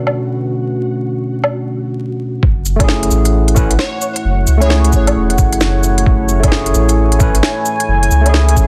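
A barky, overdriven tine electric piano with sidechain pumping and digital delay accompanies this melancholic, wistful future garage excerpt at 132 BPM in F# minor, over a dark, detuned sawtooth pad with chorus and a flickering granular texture that stops at 2.0 s, while a swung organic electronic kit with a woody snare, crisp hats, cabasa and woodblock plays throughout, joined by a round sub bass and a muffled, thumpy kick at 2.4 s, and a catchy plucky unison lead with 12-bit grit appears briefly at 3.8 s, the mix sitting in a dense, heavily limited master dusted with vinyl crackle.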